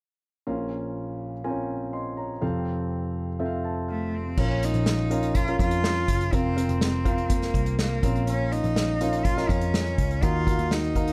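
A straight 4/4 pulse at 123 BPM drives this bittersweet, earnest piano-driven pop fragment in Bb minor: a deep-bassed concert grand opens alone in plate reverb and plays a fill at 3.4 seconds, a biting, vibrato-rich bowed cello takes the melody from 3.9 seconds, and at 4.4 seconds a round, foam-muted picked electric bass and an airy small-room acoustic kit with punchy kick, bundle sticks, hi-hat and crash cymbal join under a dark, lightly reverberant production.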